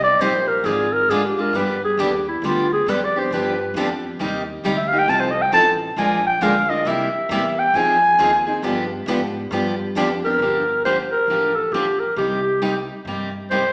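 A growling clarinet leads this bittersweet, virtuosic passage of acoustic string swing at 135 BPM, its raspy, scooped vibrato soloing up front through the opening section before the music settles into G minor at 10.4 seconds. Beneath it, a pizzicato upright bass with woody, thumpy gut strings sits low. Two picked steel-string acoustic guitars accompany: one fresh-stringed and up front with audible finger squeak, the other boxy and in the background until 10.1 seconds. The band plays live in one room, with wet large studio reverb and a small speaker sound.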